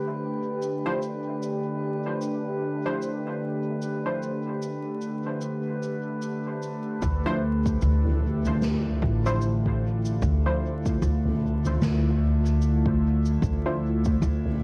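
Ambient dub at 75 BPM in 4/4, with a lazy swing on the sixteenths, this deep, hazy fragment in D dorian is cut from a longer piece and rests on a single Dm9 chord. An airy, breathy pad sits up front with slow-blooming sustained chords under chorus, while a drifting glass-harmonics texture with glassy overtones and its own reverb hovers above until 7.0 seconds. A soft-mallet drum kit with a fat snare, cabasa and toms enters at 0.6 seconds through a cassette-tape coloring, and a muted, mellow filtered chord stab with a plucked decay adds chorus and dub echo. At 7.0 seconds the second half deepens as a woody pizzicato upright bass steps forward and an overdriven electronic kick joins, also run through cassette tape. Light reverb and vinyl crackle give the whole piece the grainy feel of a home cassette recording.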